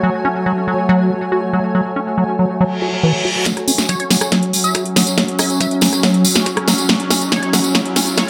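A moderate digital room reverb wraps this intense, alien psychedelic trance excerpt, cut from a longer piece in F# minor at 140 BPM in straight 4/4. From the start, a squelchy, resonant square-wave acid bass plays a riff under a filter sweep, with chorus, tape echo and sidechain pumping, while an evolving, warbling wavetable pad holds sustained chords and a blurred, cloudy granular pad sits higher as a soft texture. A reverse cymbal and riser enter in the background at 2.7 seconds, leading into a build-up at 3.5 seconds. There the drums arrive: an up-front electronic kit with a cracking snare, metallic hi-hats and rim clicks, a very quiet knocking kick, and a jingly acoustic tambourine, all carrying a drum fill through the build. At 3.9 seconds, a juicy, detuned blip pluck adds a second line, colored by phaser, cassette tape grit and tape echo.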